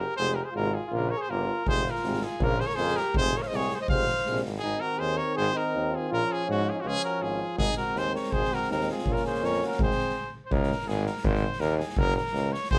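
A clear, lightly vibrato trumpet leads up front in this festive, virtuosic Balkan brass band excerpt at 163 BPM in 2/4, moving from F minor to Ab mixolydian at 4.6 s, with a mellow, close-miked flugelhorn on the second line, a tuba holding the bass, a distant, roomy trombone and a euphonium as background accompaniment, and an airy, polished street-band drum kit with a boomy kick and medium-tuned snare entering at 1.7 s, all in a moderate studio reverb before a brief stop at 10.1 s.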